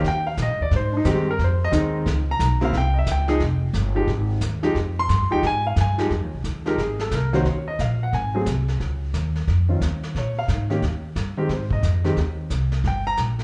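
The grand piano leads this swinging, smoky jazz piano trio excerpt in F minor at 178 BPM in 4/4, with a 64% swing on the eighth notes. Up front and warm, with a short sustain and a slapback echo, the piano carries the melody from Db3 to C6 and takes a solo through the opening 6.1 seconds. The plucked upright bass sits equally close, its woody, thumpy steel-string tone moving between F1 and Bb2. Further back, a vintage brush kit sets a dark, smooth pulse with brushed snare, hi-hat, a tight kick and a medium-tuned snare, its top end rolled off. The harmony moves through chords such as Abmaj7, Fm9, a rootless Fm7, Dbadd9 and Bbm7 before landing on Gm. The whole performance sounds like a live club gig heard through the venue's PA, with club reverb, small-room ambience and a muffled top. The piano stops at 13.2 seconds, and the bass and drums carry on to the close of the fragment.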